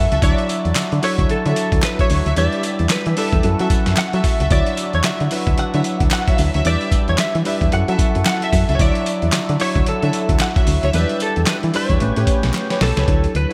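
A punchy, round FM bass anchors this flirty, upbeat new jack swing groove at 112 BPM in D major with its fast-attack, dark notes, joined by a gritty, pitched-down boom bap drum kit with a thumpy kick, medium-tuned snare, hi-hat, tambourine and handclaps, all up front with a large-room sheen. A clean, picked electric guitar carries the melody, recorded direct and given an ensemble chorus, while a worn, slightly out-of-tune tine electric piano supplies the accompaniment. A studio string section plays distant, bowed stabs with vibrato and portamento, and a reedy accordion holds sustained chords in the background until 13.1 seconds. A barely audible group handclap adds a crisp human touch from 0.8 to 12.7 seconds, and a drum fill arrives at 12.5 seconds as the harmony moves through Dmaj9, Em7 and F#m7 before landing on A9. Moderate lush hall reverb and bright 1980s-style digital production frame this short cut from a longer piece.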